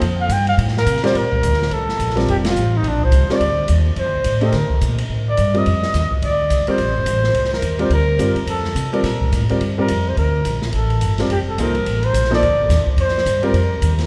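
This modal jazz excerpt, cut from a longer piece, moves at a brisk 213 BPM in 4/4 with a light swing, settling on Bb major with a hypnotic, spiritual mood. A bucket-muted trumpet comes in at 0.2 seconds as the featured solo voice, its veiled, dark tone shaped by soft attacks, scooped notes and vibrato, sounding both up front and roomy. A woody, thumpy pizzicato upright bass anchors the low end, while an open jazz kit of hi-hat, ride, snare and a boomy kick sits further back with dark cymbals and a rolled-off top. A clear baby grand enters at 1.0 seconds with an intimate, natural sound, audible action noise and long sustain, as the harmony shifts from Bbmaj7sus2 to Bbmaj9. The band lands a shared accent at 2.4 seconds, and a wet church reverb with a 3.4-second tail bathes the ensemble in a spacious, resonant hall.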